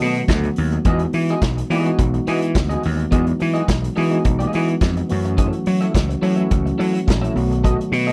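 A straight 4/4 disco groove with a glamorous, sultry air sets a punchy, growly overdriven slap bass up front beside a vintage acoustic drum kit of hi-hat, kick and snare with a pumping small-room sound and a rolled-off top, while a mellow tine electric piano heard through its built-in speakers and a compressed, picked electric guitar on the edge of break-up with analog chorus fill in B7, Emaj9 and F#m7 in this short, dry excerpt cut from a longer piece.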